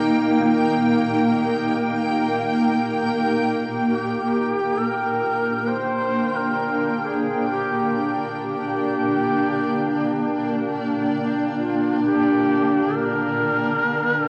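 In free time, this unsettling, desolate ambient passage opens on a cloudy, detuned granular pad holding sustained chords from Eb to G minor, its blurred, slow-blooming sound bathed in built-in and shimmer reverb. At 3.9 seconds an airy, reedy shakuhachi enters with a warm vibrato melody, its highs rolled off and trailed by shimmer reverb and delay. The whole fragment sits in a cavernous cathedral space and carries the warble and pitch drift of worn cassette tape, cut from a longer piece.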